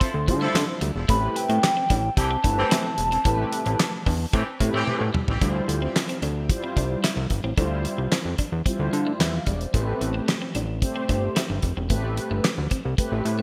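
A hollow, woody synth lead with chorus and digital delay carries the melody over a distant horn section, a slightly broken-up, twangy guitar riff in the background, and a damped drum kit with tight kick, fat snare, handclaps and gated reverb, all in a funky, late-night early-eighties boogie funk groove at 111 BPM. A thick, detuned analog bass and round, dark synth brass with vibrato enter almost at once beneath chords of Dm11 and Am9. As a drum fill begins, the lead and horns drop out at about 5 seconds, leaving the bass, brass, guitar and drums to carry the rest of this cut from a longer piece in a bright 1980s-style digital production with lush hall reverb.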